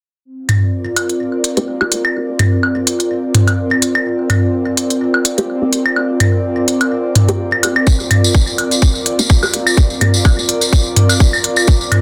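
A dense, heavily limited modern mix with moderate studio reverb opens this cut from a longer minimal techno piece at 126 BPM in 4/4, its 16ths swung lightly, and the mood is quirky yet clinical. An airy, breathy pad sits up front from 0.3 seconds, slow to bloom and long to release, with a noise layer and ring modulation giving it a full-bodied shimmer under chorus and sidechain pumping, while crisp, tape-tinged electronic hi-hats carry the groove. Overdriven analog-style toms, claves and woodblock, bathed in digital delay and placed close with a small-room character, are the loudest of the early parts and supply the oddball accents. A muted, nasal dub chord stab with a filtered pluck and moving notch flickers through phaser, ensemble chorus and delay, first briefly near 1.6 seconds and then again from 5.4 seconds. At 7.9 seconds a tight, layered kick drum thumps in up front alongside a jingly, band-limited vintage tambourine, fleshing out the rhythm over a single C7 colour.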